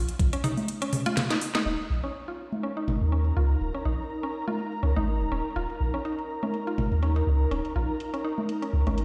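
A lush hall reverb and the stone echo of a big sound system in a bare room frame this cool, quirky minimal techno cut from a longer piece, running at 123 BPM in 4/4 with a light swing on the sixteenths. A deep, punchy sine sub bass with a pitch-drop attack pumps up front from the start, joined by a garage kit of cracking snare and metallic, filtered hats, a woody, round mallet-like FM pluck riff with chorus and delay, and overdriven analog toms and congas with digital delay. After a drop and a drum fill, the ethereal, airy pad enters at 2.4 seconds with detuned ensemble chorus and a mellow sustain, while filter sweeps move across the drums and the arpeggiated synth.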